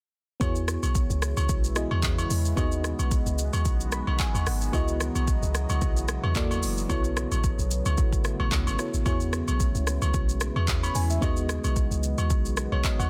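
A deep, round log drum bass anchors this late-night, hypnotic amapiano excerpt, riding a lightly swung electronic afro-pop kit of deep kick, crisp hats, handclaps, rim click and shaker alongside band-limited agogo bells, while a mellow, warbling FM electric piano with chorus and tremolo plays extended chords and adds a short fill at 3.7 seconds, and a moody, detuned sawtooth pad enters at 1.2 seconds beneath a dense, heavily limited, dry mix.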